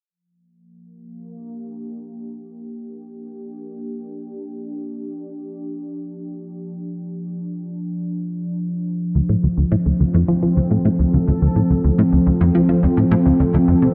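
Ambient, sequencer-driven space music with a cosmic, expansive mood, heard here as a short fragment cut from a longer piece. A sweeping, resonant pad opens the recording with a fade-in, holding sustained chords built from detuned sawtooth and sine tones that evolve slowly through a filter swell and a long release, bright and up front with a shimmer of chorus. At 9.2 seconds a plucky analog bass enters with a punchy, funky riff, its detuned sawtooth and pulse-wave tones snapping in with a fast attack and decaying under a moving notch, touched with subtle chorus and delay. The harmony moves from Gm7 to Dm7 as the bass arrives. The whole mix is soaked in a cathedral-like reverb with a long tail, giving the music a dreamy, floating sense of space.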